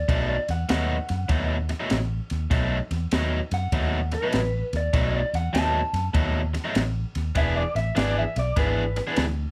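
Soulful, laid-back electric blues shuffle with a swung feel, this excerpt rides on a B7 chord before moving to E7 at 7.4 s, as a clean electric guitar solo runs throughout. A crunchy, bright overdriven guitar plays the riff up front alongside a second guitar line through a small old amp that sounds slightly broken-up and lo-fi, while a round, foam-muted vintage electric bass sits up front. A compact cocktail drum kit adds a punchy kick, a high-tuned snare and dark ride cymbal from a small room, all wrapped in light reverb and a faint mains hum.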